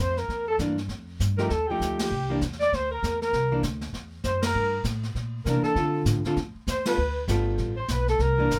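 Relaxed and warm, this short cut from a longer piece is small-group jazz in the swing and bop vein, riding a brisk, lightly swung pulse. A breathy flugelhorn carries the melody up front, with scooped notes and vibrato, while a softer alto saxophone traces a second line in the same register further back, its attack gentle and its vibrato light. An upright bass sits prominently with a woody, growly, thumpy pizzicato tone. A brushed drum kit joins at 0.2 seconds with dark cymbals, a medium-tuned snare and a boomy kick, and a clean, dark hollow-body electric guitar comes in at 0.6 seconds to comp through a progression moving from Em7b5 and F9 to C9, Dm7 and G9. The whole band hits a few shared accents along the way, and light reverb gives the small-room sound a natural glow.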